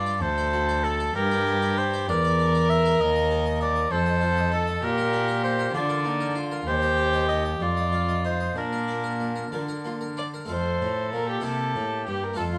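In a lightly reverberant room, this radiant, serene baroque-style sonata movement in 6/8 at 64 BPM, settling into Bb major from 3.0 s, sets a clear, punchy oboe melody with light vibrato up front over a dark, reedy gut-string violin second line, a brilliant plucked harpsichord with octave strings, and a warm, nasal period-style cello bass, all four playing throughout this passage cut from a longer piece.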